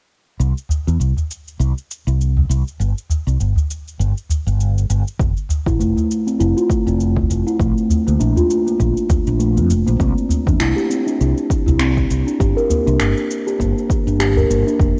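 A lightly swung sixteenth-note groove of electronic shaker and finger snaps, tinted by cassette tape, sits under a deep acoustic udu, with a punchy, layered electronic kick joining at 5.2 s in this peaceful, organic downtempo passage cut from a longer piece. A dark, round fretless electric bass holds the low end up front, thickened by tube saturation and ensemble chorus and breathing with sidechain pumping. From 5.7 s a pure, ringing steel tongue drum played with rubber mallets spins meditative arpeggios through a low-pass filter and analog delay over Fmaj7, Bbmaj7, Cadd9 and Gm, all wrapped in light reverb and the soft grain of a home cassette recording.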